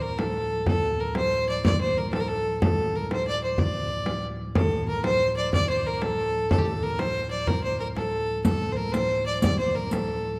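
A steady 6/8 pulse at 123 BPM in dotted quarters drives this ancient-sounding medieval dance excerpt, with a deep, hard-handed frame drum carrying the beat throughout. Up front, a single bowed fiddle plays a biting, earthy melody with light vibrato over a hollow, mellow drone from a stopped-flute pipe organ. At 8.4 s a riq with bright jingles joins softly in the background, all set in a dark concert hall reverb.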